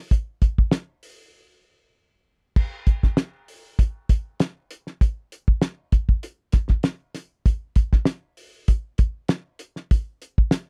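A straight 4/4 funk groove drives this short cut from a longer piece, carried entirely by a cloth-damped acoustic drum kit of kick, snare, hi-hat and crash cymbal. The mood is cool and funky, and the kit sits up front in a dry, close 1970s-style studio sound with little reverb. Its character is thuddy and smooth: the snare is fat, the kick tight, and the cymbals dark with a rolled-off top. A break arrives at 1.3 seconds, and from 2.6 seconds a new section carries the groove on until the drums stop at 10.7 seconds. The overall tone is warm.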